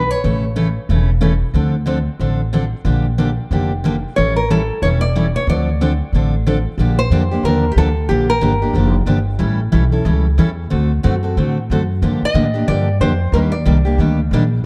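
A woody, thumpy pizzicato upright bass, a full-bodied, picked jumbo steel-string acoustic guitar and a small, fingerpicked nylon-string guitar open this bittersweet, swinging excerpt of jazz manouche at 183 BPM in D minor. The nylon-string guitar carries the melody through an analog delay in phrases at the start and around 4.2 s and 12.3 s, as the harmony turns to G minor at 6.8 s within a dark production with light reverb and studio ambience.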